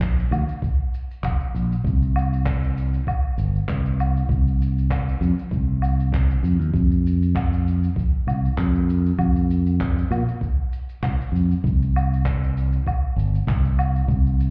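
A fingered electric bass sits up front, direct and warm, spanning F1 to Bb2 over a gritty, thumpy sampler-style kick and acoustic handclaps, shaker and woodblock played with brushes in this smooth sunset chillout excerpt at 98 BPM with a light 16th-note swing, all heard muffled as if through a club wall.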